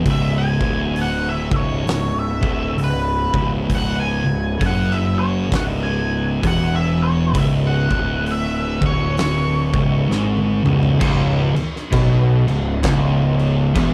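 A growly, up-front fuzz bass anchors this sludgy, ominous stoner and doom metal excerpt at 66 BPM in C# minor, with a pair of thick, distorted fuzz guitars grinding out a riff in the background, an octave-fuzz lead guitar tracing a wah-soaked, tape-echoed melody until 10.6 seconds, and an oversized, low-tuned acoustic kit with a boomy kick, fat snare and dark cymbals pumping in a big room before a fill at 10.1 seconds leads into a double-tracked overdriven guitar riff from 11.0 seconds.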